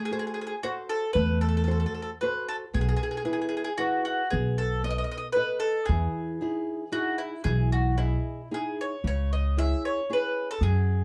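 Wistful and passionate, this short fragment of a longer piece is an Italian folk serenade in E major, moving at 115 BPM in a straight 3/4. A picked bowl-back mandolin carries the melody, its bright double strings sitting up front in the mix. Beneath it, a fingerpicked nylon-string guitar with fresh strings provides accompaniment, its sound small and bright. At 1.2 seconds a pizzicato upright bass joins, woody, growly and thumpy, and placed close to the listener. The harmony drifts from Am6 through E/B and B7 to Emaj7, then turns to C#m as a new section begins at 9.0 seconds. The production is dark and warm, with light reverb around the acoustic instruments.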